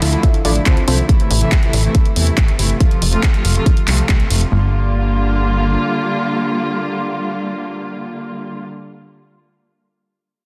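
Uplifting trance with a euphoric yet bittersweet mood, this brief cut pairs a lush, detuned unison pluck melody, heard only until 1.0 seconds and trailed by dub echo, with veiled con sordino strings that sustain chords up front, a funky sawtooth analog bass, a punchy electronic kick, a layered house kit of handclaps and hi-hat, and a barely audible downlifter near 0.4 seconds, while sidechain pumping moves the pluck, strings and bass under a dense, heavily limited master.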